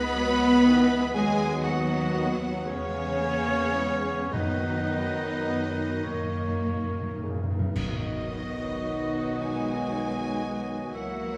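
Warm and serene, this slow romantic movement for symphony orchestra unfolds in a lilting 6/8 with a flexible, rubato feel, taken from a longer piece. A lush, vibrato-rich violin section carries the melody, joined in the same register by an airy, bright silver flute, while a second, very quiet violin line, a distant clarinet and a roomy solo oboe weave supporting lines. Focused violas and a soft-edged bassoon fill in the accompaniment, mellow French horns hold sustained chords from the start, and a very quiet trombone section joins them at 0.6 seconds. Intense cellos and smooth, even double basses anchor the bass, and close, dry timpani struck with hard mallets enter at 4.3 seconds, playing a fill from 6.0 seconds before a full accent at 7.8 seconds, where dark clash cymbals and concert bass drum mark the return to the home chord. The sound sits in a wet recital hall reverb that gives the woodwinds and horns a spacious glow.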